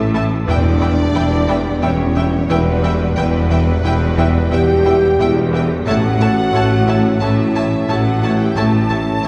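A tense, relentless hybrid orchestral and electronic film score cue in E dorian at 89 BPM, where a warm, lush symphonic violin melody rides over a focused studio violin second line, smooth violas, mellow French horns, very quiet punchy trombones, and a bass of clear cellos, dark double basses and a soft tuba, while a juicy, squelchy blip pluck arpeggiates, a funky analog bass plays a riff, and an eerie, warbling metallic drone enters at 0.3 seconds, all set back in a wet scoring-stage reverb as the harmony moves from Em to A.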